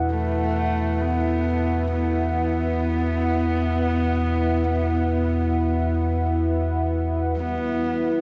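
A rumbling, warbling drone, a detuned sawtooth analog pad and a barely audible singing bowl open this ominous dark ambient fragment in free time and E minor, joined from 0.1 s by a husky horsehead fiddle melody with light vibrato and delay, before a very quiet bronze gamelan-type metallophone adds shimmering arpeggios at 7.4 s as the Esus2 harmony shifts to Emadd9, the mix soaked in huge, dreamy reverb.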